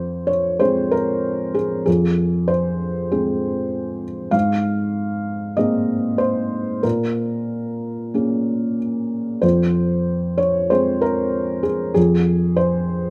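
A felt-muted upright piano, soft, mellow and audible in its action noise, plays alone and up front from the first second in this intimate, melancholic neoclassical minimalist fragment cut from a longer piece, moving with a rubato feel through Fm, Abadd9 and Bbm7 before settling back on Fm at 9.4 seconds, its range spanning F2 to F5 under a light reverb.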